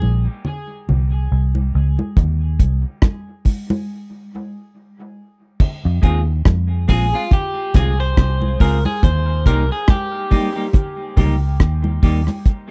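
A dark, foam-muted fingered electric bass sits up front in this deep, hypnotic dub reggae passage cut from a longer piece. Its round, punchy, amped tone opens a sparse break alongside medium-tuned congas that ring out close and dry, sent through dub echo. The deep reggae drum kit arrives at 2.2 seconds, smooth and prominent, with a tight kick, a rolled-off top, crash cymbal, hi-hat and rim click. At 6.0 seconds a clean, picked semi-hollow electric guitar adds a hollow-body accompaniment bathed in dub echo, and from 6.9 seconds a compressed, slightly broken-up electric guitar carries a brief picked melody through spring reverb and dub echo. Over a swung sixteenth-note feel the harmony moves from Cm to Fm and then Eb, all captured in a dry, close recording with a 1970s studio character.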